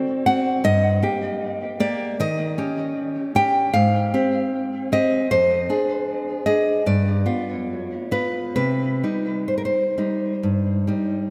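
Rubato phrasing in 4/4 drifts between 64 and 79 BPM in this intimate, wistful romantic piece for solo classical guitar in C minor, tuned to A4 = 444 Hz and cut from a longer work. The fingerpicked nylon-string guitar sits up front, ranging from F2 to G5, its acoustic tone trailed by a diffuse ambient delay as it moves through D7, Gm, Eb7, Abmaj7, Dm7b5/F and G7 before settling on Cm at 8.6 seconds. A lush hall reverb with a 2.8-second tail soaks the whole dreamy mix.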